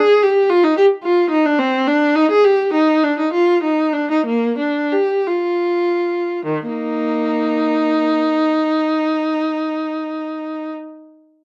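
This is a classical, baroque-style suite movement for unaccompanied viola in Eb major: a short excerpt cut from a longer piece, flowing and dance-like in 12/8. The tempo sits around 48-75 BPM counted in dotted quarters and is played with rubato, slowing down from 0.2 to 6.4 seconds before a new section begins. A single bowed viola, placed up front, carries everything from the start until 10.7 seconds, moving between Eb3 and Ab4. Its tone is warm, smooth and even, with vibrato and a smooth top end. A light reverb and a dark, warm production surround the solo line.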